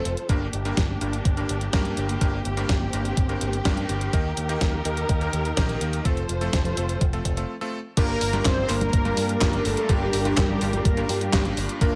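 Italo disco cut from a longer piece, danceable and bittersweet in a straight 4/4, where lush, dark bowed strings and clangy, cutting electric grand piano stabs through a low-pass filter and delay sit over a bright picked bass with an envelope filter, a thumpy electronic kick and a fat-snared 12-bit drum machine with congas, handclaps, hi-hat and crash in gated reverb, before a round, detuned synth brass melody with chorus and delay enters at 8.0 seconds after a short break.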